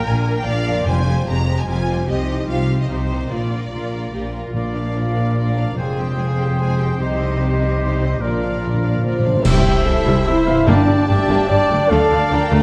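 Opening on a clear, intense violin melody over lush string sections, rippling harp arpeggios and dark bowed cellos and basses, this soaring, triumphant adventure-film cue in three-four adds flute, bright oboe, clarinet and roomy horn chords at 4.5 seconds before hard-mallet timpani and a dark cymbal-and-bass-drum crash mark the lift into a new key at 9.5 seconds, all in a moderate scoring-stage reverb.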